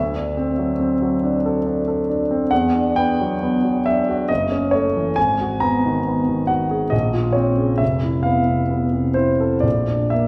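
A rubato 3/4 pulse drifts between 58 and 71 BPM, giving this short impressionist classical passage for solo piano a wistful, hazy mood. A concert grand carries the whole 10.3 seconds alone, spanning F1 to A#5, with deep bass, long sustain and audible action noise that makes it sound intimate and present. The harmony glides through colourful extended chords, opening on D9 and passing through Em9, G#m9 and Fmaj7#11 before settling on Bb at 9.7 seconds. A wet recital hall reverb with a 1.5-second decay is heard from further back in the room, wrapping the polished tone in a soft halo. The instrument is tuned to A4 = 443 Hz, and the passage is cut from a longer piece.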